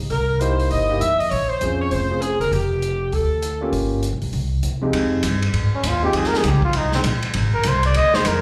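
Big band swing in a dramatic, brassy mood, caught as a short cut from a longer piece played live and heard through a club PA with light reverb. A pizzicato upright bass, woody and up front, carries the low end from the first moment, while a distant, roomy drum kit swings on hi-hat, ride, snare and a boomy kick. A clear, tight saxophone section states the melody with light vibrato and a soft attack, touched by slapback echo, until about 3.7 seconds. A concert grand piano with deep bass adds natural-sounding accompaniment through the harmony, which moves from a C7#9 through Bbm7 and Gm7b5 before settling on Fm7. Around 5.7 seconds a dark, breathy trumpet takes a vibrato-laden solo with scooped notes and a smooth top, also carrying slapback echo, and it rides over the bass to the close.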